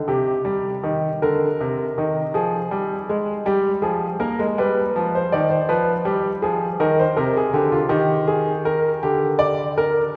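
Classical in a baroque style, this two-part invention for solo grand piano sits in C minor and carries a solemn, serious mood at a slow 54 BPM, counted in dotted quarters within a straight 12/8 metre. A clear baby grand, tuned to A4 = 441 Hz, plays alone for the full 10.1 seconds, spanning C3 to D5. The piano sounds intimate and natural, placed up front, with audible action noise that brings the mechanism close to the ear. A wet church reverb with a 3.4-second decay surrounds it, lending a spacious, resonant halo. The harmony moves from Cm through Fm and G7 back to Cm, arriving on Gm/D at 9.0 seconds as this fragment of a longer piece breaks off.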